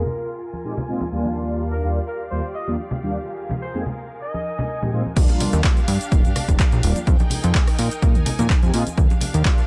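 A punchy, up-front analog bass with a plucky sawtooth bite drops in at 5.2 s, joined by a tape-warm electronic kick and an analog drum machine of crash, handclaps, hi-hat and rim click, in this sunny, funky filtered disco house cut at 126 BPM in Eb major. It follows an opening filter sweep where a clear, tight horn section with tape echo carries the melody until 4.9 s over round, detuned synth brass with chorus and phaser, lush bowed studio strings, and ringing, close congas and egg shaker, while sidechain pumping and low-pass filtering shape the horns, brass, strings, percussion and bass.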